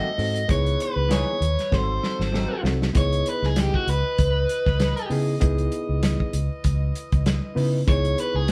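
Brooding and mournful, this short straight-eighth soul blues excerpt in C# minor at 97 BPM sets a dark, overdriven, up-front electric guitar melody over smooth-topped jazz horn chords, gritty reedy electric piano, a round foam-muted bass and a dry, muffled soul drum kit in a live room with wet reverb, as slightly broken-up guitar stabs drop out at 2.5 seconds and a drum fill over G#7b9 leads into the lead guitar's solo over C#m9 from 2.9 seconds.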